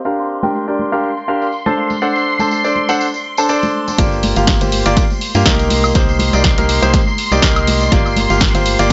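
A dry, echo-heavy mix with its top end rolled off gives this soulful, energetic piano house excerpt a dusky, close sound in G minor at 122 BPM, with a light 16th-note swing. A bright, brilliant concert grand carries the riff up front from 0.1 seconds, its short-sustain phrases polished and ringing into tape echo and pumping against the sidechain. Beneath it, a shimmering, vintage string machine holds slow-attack violin chords through an ensemble chorus, while tambourine and congas add acoustic, small-room percussion. A filter sweep on the strings runs through the opening over Gm7 and D7. At 4.0 seconds the drop lands: a punchy electronic kick, an analog drum machine with low-passed snare, hi-hat and woodblock, and a hollow, dark, organ-like FM bass with a fast attack and decaying tone, moving through Gm7 and Cm7.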